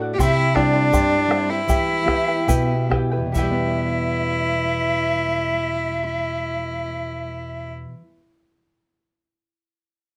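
Andean folk in E minor, earthy and melancholic, where a bright, biting cello carries the melody up front over fingerpicked nylon-string guitar and shimmering charango, a breathy bamboo pan flute traces a second line with soft chiff, and a deep bombo with grainy egg shaker drives the first 3.8 seconds while the tempo slows between 66 and 83 BPM in this cut from a longer piece, all set in moderate studio reverb with a dark production.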